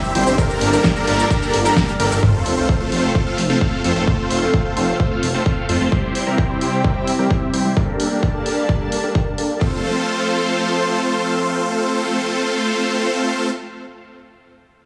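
This excerpt opens in the middle of a drop, with a euphoric supersaw lead playing an up-front riff over a lush, slow-blooming pad of sustained chords. A nasal, bold unison lead plays arpeggios alongside, both pad and leads pumping against the sidechain. Big-room drums drive the festival progressive house groove at 130 BPM in F major, with a punchy kick, a huge snare, cabasa, hi-hat and ride cymbal. A thick, saturated detuned saw bass rolls beneath. At 2.2 seconds the arpeggios stop as an impact hits and a sub drop rumbles in the background, while a filter sweep begins reshaping the bright, phased supersaw, which also carries tape echo. The harmony moves through Gmadd9, F and C over a moderate hall reverb. The bass drops out at 5.9 seconds and the drum kit stops at 9.5 seconds, leaving the pad and the full-bodied lead to carry the uplifting final stretch.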